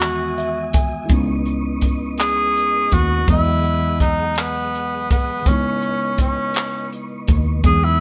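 Slow six-eight R&B with a late-night, sultry mood, cut from a longer piece and played live in a moderately reverberant stone room. A mellow tine electric piano plays an opening fill, and from 1.1 seconds a breathy, whispered tenor saxophone takes an intimate solo, sitting up front over a round, woody fretless bass, a dry cocktail drum kit of handclaps, hi-hat and punchy kick, and soft, flute-like tonewheel organ chords colored by chorus vibrato and a fast rotary speaker. The harmony moves between Emaj9 and C#m9.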